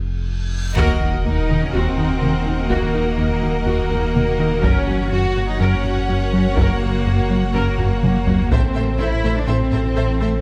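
A deep, full sub bass with an octave sits up front from the very start of this relentless, vast cinematic cue, a hybrid orchestral and electronic film score in Eb dorian at 124 BPM in a straight 4/4. After a short opening break with a drum fill and a huge, dark reverse cymbal and sub drop in the background, the full ensemble arrives with an accent and impact at 0.8 seconds. Background taiko ensemble struck with hard sticks drives the pulse, while a retro, glossy chorused synth bass riff, saturated and evolving, churns beneath. Lush bowed strings fill out the orchestra: a clear, intense violin section carries a distant second line, rich viola and cello sections add smooth vibrato, and a very quiet double bass section anchors the low end, joined by a mellow French horn section holding soft-attack chords in the background. An ethereal, airy pad with tremolo enters at 1.7 seconds, very quiet beneath it all, as the harmony moves from Ebm to Gb and on to Am, with a second drum fill near 7.8 seconds, all set in a moderate scoring stage reverb.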